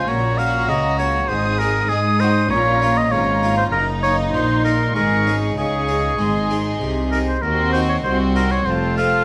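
A straight 4/4 pulse at 98 BPM drives this dramatic baroque-style concerto movement, cut from a longer piece and heard for 9.2 seconds. Up front, a solo oboe with a smooth, warm top carries the melody in its middle range. A high violin section also carries a melody from further back, while a second violin section adds an inner line below. A dark, distant viola section and an airy, plucked harpsichord with a full two-string character fill in the accompaniment. Bowed cello and double bass sections, reedy and rich with gut-string, period-style tone, anchor the bass, the double bass adding light vibrato, and the harmony travels through chords such as Bbm, Ebm/Gb, Absus4 and Cdim/Eb before landing on F. Close, detailed microphones catch the ensemble inside a moderate recital-hall reverb of about 1.5 seconds.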